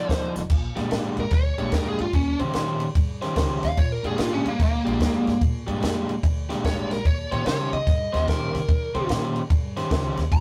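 Electric blues shuffle with a swaggering, rollicking swing, cut from a longer piece, moving through Bb6 and Eb6 chords. A biting, overdriven lead guitar takes a solo from 0.5 seconds over a picked, hollow-body semi-hollow guitar riff, while a woody pizzicato upright bass and a compact cocktail kit with dark cymbals, a high-tuned snare and a punchy kick hold the groove. The rough rehearsal-room sound carries light reverb and tube saturation.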